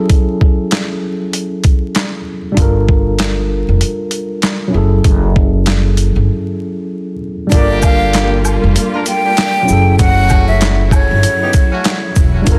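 This short cut from a longer piece sounds dense and heavily limited, set in a small room with vinyl crackle running underneath. It's a dark, reflective boom-bap hip-hop groove at 97 BPM in 4/4 with a 16th-note swing, moving between F#m9 and Gm9 chords. A worn, slightly out-of-tune tine electric piano opens the track, lightly overdriven with a cassette-tape color. The gritty, pitched-down sampler drum kit sits up front with a thumpy kick, medium-tuned snare, hi-hat, handclaps and shaker. A woody pizzicato upright bass enters at 2.6 seconds, and at 7.5 seconds the arrangement fills out with a breathy jazz flute melody carrying delay and vibrato, tight jazz horn stabs with their own delay, lush bowed strings distant in the background, and a faint tube shaker and woodblock layer.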